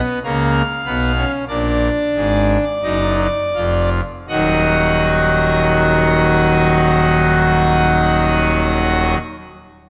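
A full pipe organ opens this serious, contemplative fragment of a baroque-style three-part fugue in E-flat minor, stops drawn with bright mixtures that lend it a majestic, brilliant cast. The music moves in a slow, straight 4/4 at 40 to 50 BPM, easing its pace through the opening 4.3 seconds as the harmony passes from a B-flat chord to a B-flat seventh. At 4.3 seconds a new section arrives on an E-flat minor chord, and the organ, playing alone throughout, spans from a deep Eb1 up to F5. The voicing leans romantic, and the instrument sits up front in a moderately reverberant scoring-stage space with a decay of about 1.8 seconds. Cut from a longer piece, the passage breaks off at 9.2 seconds.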